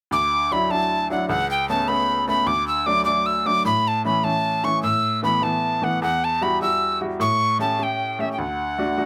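Close, detailed miking and light reverb frame this rollicking, cheerful Celtic folk jig in D major at 101 BPM in 6/8, cut from a longer piece, where an airy metal tin whistle with crisp chiff, vibrato and lifted highs carries the melody up front over a brilliant, woody upright piano whose intimate accompaniment reveals audible action noise as the chords move from Dadd9 through Emadd9 and A7 to a closing D.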